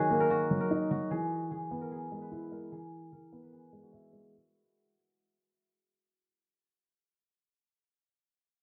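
Worn, warbling cassette tape and a low-pass filter color this brief hip hop fragment, which is set in a half-time feel and is lightly touched with studio reverb, as a fade-out and a filter sweep run through its first 4.3 seconds. Up front, a dark, mellow grand piano carries the brooding accompaniment with audible action noise until 4.4 seconds, while a silvery, ringing steel-string zither, plucked with fingerpicks, sings the menacing melody until 6.5 seconds.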